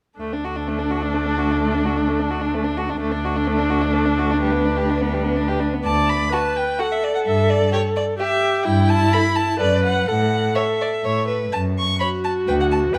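A quick classical-period movement for string quartet in triple time, graceful and cheerful, heard as a short portion cut from a longer piece. All four players begin together at 0.2 seconds: the first violin carries the melody up to C#6 with focused, vibrato-laden bowing that sits slightly distant, while the second violin plays a smooth-topped inner line and drops out at 12.6 seconds. The viola fills in the accompaniment, and the cello holds the bass low in its range, its soft attack, portamento and expressive vibrato placed up front in the blend. An opening section gives way to a second at 5.9 seconds, where the harmony moves through Em/G, A5/G and D/F# before closing on a rootless Bm/D. Close, detailed microphones and light reverb capture a rich, intimate quartet sound.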